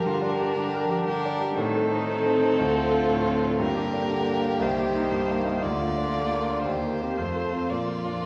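In a straight 4/4 at 118 BPM, this quick classical-period movement for piano quintet moves with a cheerful, graceful step, in a short excerpt cut from a longer piece. A focused first violin, singing with vibrato, carries the melody between G4 and D5. A clear, more distant second violin traces a second line beneath it, alongside a warm, smooth, even cello in the background. Up front, a bright, brilliant concert grand supplies the accompaniment with deep bass, an open tone and long sustain, joined by a rich, distant viola that stays in the background. The harmony opens on G minor and passes through A diminished, D minor seventh and C minor seventh before moving through F onto B-flat at 7.7 seconds. A wet scoring-stage reverb with a 2.1-second decay places the ensemble further back in the room, with a softened top end.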